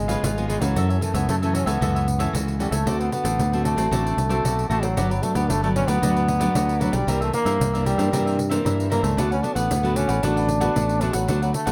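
A bright, forceful trombone opens this joyful, lively samba and choro clip at 0.0 seconds, playing a jazz-style solo melody with vibrato that sounds distant and roomy. It is joined from the start by a fingerpicked nylon-string guitar and a growling fingered electric bass. The tempo is 114 BPM in a straight 4/4, in D major. The guitar is full-bodied with a deep classical character, and its finger squeaks are audible, while the overdriven bass sits punchy and up front with a direct, amped tone. At 0.1 seconds a crisp, picked cavaquinho and a jingly pandeiro enter, the pandeiro close and dry. The harmony moves from C#7 and F#m7 through D7, Gmaj7 and C9 to D6, and the sound carries light reverb with close, detailed microphones.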